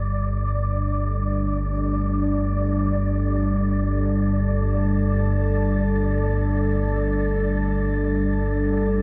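Dark ambient drone in free time, unsettling and desolate, cut from a longer piece and resting on a single Gsus2 chord. A deep, rumbling drone with a vintage warble sits up front from the start, joined by a breathy, wind-like tuned noise texture, and at 0.4 seconds a detuned, full-bodied analog pad enters with sustained chords, thickened by chorus and shimmer reverb. The dark production is bathed in cathedral reverb with a 5.3-second decay, and the noise texture also carries a shimmer tail.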